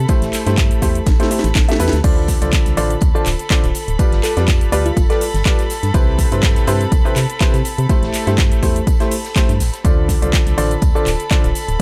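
A soft, bowed chamber violin section and a hollow, organ-like FM bass with tube saturation open this soulful, energetic piano house excerpt at 123 BPM in D dorian, both pumping against a punchy, up-front electronic kick, while a woody, slightly detuned upright piano riff moves through Am7, Dm7, G7 and Cmaj7. An overdriven house kit with cracking snare, metallic hats, handclaps, shaker and crash drives the groove and plays a fill at 1.1 seconds, backed by a distant, rolled-off indie kit adding tambourine. From 3.1 seconds a sparkling, warbling FM electric piano with chorus, tape character and digital delay plays a bell-like melody in the background, returning briefly at 11.0 seconds.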